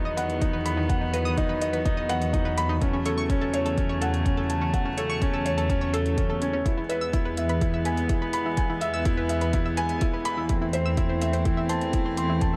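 Luminous and tender, this piano and strings electronica opens with an intimate, felt-muted upright piano riff, up front and trailed by delay, over sustained, sul tasto chords from a distant string quartet that pumps with sidechain. A dark, detuned saw bass rumbles on a held E2 with the same pumping, while a bright analog pluck sits in the background with chorused, delayed arpeggios roughened by 12-bit sampler grit. Overdriven electronic hi-hat and kick drum, re-recorded in a large room, arrive by 0.4 seconds, with the deep kick up front and the metallic hats quieter beneath it, and light digital ambience surrounds this passage cut from a longer piece.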